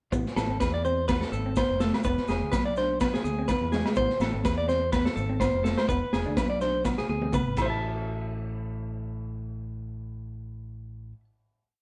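A compressed, up-front clean electric guitar spins a picked arpeggio ostinato with a warbly pitch drift over a dark, slightly broken-up second guitar, a round syncopated fingered bass riff, a gritty, saturated breakbeat kit, bright high-tuned congas, grainy maracas and ringing agogo bells in this bittersweet highlife guitar band piece at 125 BPM in A harmonic minor, where a drum fill at 6.9 seconds leads into a final hit at 7.8 seconds that the clean guitar and bass carry until about 11 seconds.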